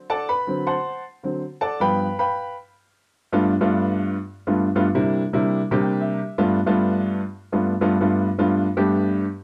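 A straight 4/4 pulse at 157 BPM drives this sunny, danceable jazz excerpt in G mixolydian, where a warm, natural baby grand piano sits up front and plays alone throughout, moving between D7, G7 and C7 chords, opening with a solo passage, adding a short fill at 5.6 seconds, and ringing in light reverb within a dark production.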